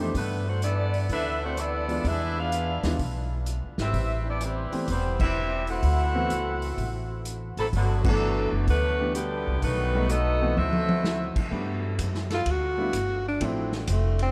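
A swung 4/4 groove at 127 BPM drives this brassy, energetic big band excerpt, cut from a longer piece and set in a vast, echoing space with a long cathedral-style reverb. A tight, mellow saxophone section carries the melody with light vibrato for the first 11.3 seconds, while a clear trombone section sits farther back on a second line and a grand piano adds intimate accompaniment, its action noise audible and its notes sustaining long. Underneath, a woody upright bass played pizzicato stays up front, and a vintage drum kit with dark cymbals, a punchy kick and a rolled-off top fills out the pumping small-room sound of the kit. The full band hits accents at 5.1 and 8.0 seconds, and a short drum fill leads into the closing passage, where the saxophones shift to soft, sustained background chords. Over them a breathy tenor saxophone takes a solo with scooped notes and a smooth top, while the harmony moves from lush seventh and ninth chords toward Gmaj9 and Dm9.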